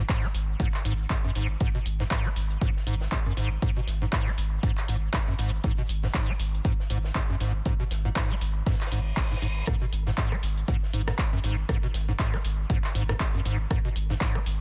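A squelchy, resonant square-wave acid bass opens this hypnotic, raw acid house excerpt, its riff running from G#1 to B3 with overdrive, ensemble chorus, delay, a filter sweep and sidechain pumping. Beneath it, a deep, round analog bass holds G#1 up front, dark and sustained, with its own filter sweep and pumping. Almost at once the drums arrive: a punchy electronic kick placed up front, a tape-warm analog drum machine supplying handclaps, hi-hat and rim click, and a very quiet, dry acoustic cocktail kit adding hi-hat and a high-tuned snare, with both machines re-recorded in a small room. The groove sits in a swung 4/4 on the sixteenths, and a short electronic reverse cymbal sounds from 8.9 to 9.7 seconds. The sound is close and dry, with little reverb, and the master is dense and heavily limited.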